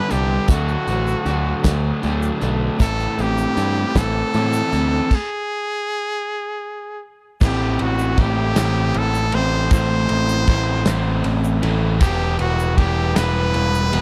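A brilliant, punchy trumpet and a crunchy, double-tracked overdriven guitar open this moody, cool indie rock excerpt together, the guitar riff sitting up front as the trumpet carries the solo melody with vibrato, scooped notes and a tape echo. A bright, direct picked electric bass with transformer saturation and a loose acoustic drum kit, with its medium-tuned snare, tight kick, hi-hat, ride and crash, join almost at once, while a grainy egg shaker rustles quietly in the background. The tempo is a slow 52 BPM in a straight 6/8, rooted in A dorian, with the harmony moving from D to Am before the band hits a stop at 5.1 s. The groove returns at 7.4 s on Am7 for a second section that later turns to Em. The sound is dry and close, with little reverb, in the manner of a 1970s studio recording, and the passage is cut from a longer piece.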